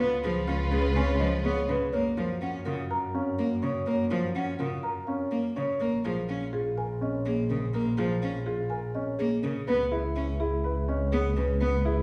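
Hypnotic and bright, this excerpt of minimalist classical pattern music moves at 124 BPM in a straight 4/4 in F# major, with a soft-mallet marimba carrying a woody, round melody over a grand piano's worn, open arpeggios with long sustain. A focused, bowed cello sits up front in accompaniment, an expressive double bass adds vibrato and portamento beneath, and a lush violin section holds sustained chords only until 1.7 seconds. The harmony shifts from C#7 to F#maj7 at 1.9 seconds, then through A#m7 and C#m7, all heard from further back in a recital hall with a wet reverb.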